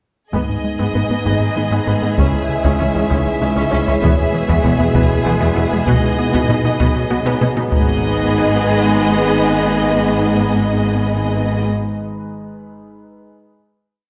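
A slow 6/8 pulse at 65 BPM, felt in dotted quarters, drives this brooding, relentless hybrid orchestral and electronic film cue in G# minor, built on a big taiko ostinato struck with heavy sticks, its compressed, saturated thump the loudest part until it stops at 8.9 s. Beneath it, cellos and double basses carry a driving bowed bass ostinato, the basses woody and doubling the line, while a rubbery, nasal square-wave bass pulses out a riff and a very quiet, squelchy resonant blip pluck pulses through arpeggios, both until 7.7 s. Violins sing a focused, lush vibrato melody over a soft-attacked second violin line, with violas adding an expressive ostinato touched by portamento. Mellow French horns and a very quiet trombone section hold sustained chords in the background, joined from 0.9 s by an eerie, metallic FM drone with chorus and its own reverb. The chords move G#m, C#m, E, B6 before settling back on G#m, which the strings, brass and drone sustain as a final chord to the close, all set in a wet scoring-stage reverb.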